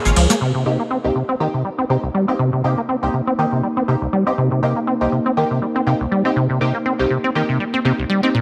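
A detuned, warbling analog pad opens this raw, gritty house passage in C phrygian at 121 BPM, holding soft sustained chords in the background with chorus while a filter sweep moves through it from 0.4 seconds, where a Cm7 arrives. Up front, a squelchy, resonant acid bass riff with chorus and tape echo drives the swung 16th-note 4/4 groove, joined by band-passed, nasal chord stabs that sound bright and ring-modulated through phaser, ensemble chorus and tape echo, with their own filter sweep. Light reverb and digital ambience surround this short section cut from a longer piece.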